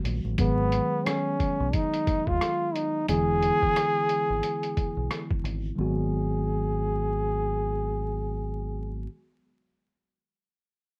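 Swung sixteenths at 89 BPM in 4/4 carry this mellow, nocturnal jazz-hop excerpt in G# minor, where a muffled, compressed sampler-style kit of thumpy kick, hi-hat and rim click drops out at 5.6 seconds alongside a dark, round fingered electric bass and a clean tine electric piano moving from G#m7 to E7, while an up-front jazz trombone, entering at 0.4 seconds, sings a close-miked solo with warm vibrato, soft attacks and scooped notes, all softened by a worn cassette tape's warbling pitch drift, vinyl crackle and moderate studio reverb.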